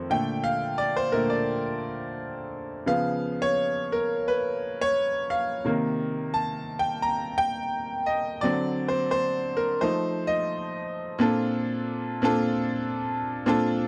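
A bright concert grand piano carries this short soul excerpt entirely on its own, its brilliant upper notes ringing over a deep, natural bass as it spans F2 to Bb5. The mood is smooth and bittersweet, with a gentle swing in the sixteenths giving the 4/4 pulse a relaxed, unhurried lean. The harmony moves from Bbmaj7 through C#7, Cm7 and Daug7 before settling on F7, then opens into a Bbmaj9 as a second section begins at 11.2 seconds. The piano sits up front in a dry, close, 1970s-style studio sound, touched by only light reverb. Cut from a longer piece, the passage closes at 13.9 seconds.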